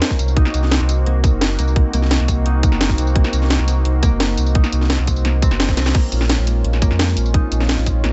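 Melancholic and rolling, this liquid drum and bass excerpt sets a smooth, warbling vintage analog pad, thick with lush chorus, against a thumb-plucked concert harp whose ringing arpeggios trail into delay. Up front, a tight, overdriven electronic kick sits alongside a layered kit of cracking snare, bright hi-hats, crash cymbal and tambourine, while a deep, full sub bass with its octave sustains underneath from 0.2 seconds. A drum fill at 5.7 seconds leads the harmony from Cm7b5 to Bbm9 at 5.9 seconds, all inside a digital ambience with a dark top.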